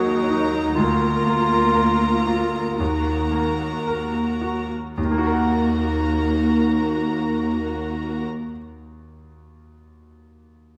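Bittersweet and moving, this brief cut from a longer cinematic film score unfolds with a rubato feel that slows over its first 5 seconds. A dark, distant clarinet carries a second line alongside a rich chamber violin section played sul tasto with light vibrato and a soft attack, giving the upper strings an intimate, smooth top. Beneath them, a lush symphonic viola section adds woody, vibrato-laden accompaniment, while a cello section supplies a floating, pure bass from far back in the hall. A bright, brilliant grand piano with short sustain fills out the harmony, moving from Ebm through Bb/D and back to Ebm. The strings and clarinet stop at 8.2 seconds, leaving the piano alone until 10.8 seconds, all set in a moderate scoring stage reverb.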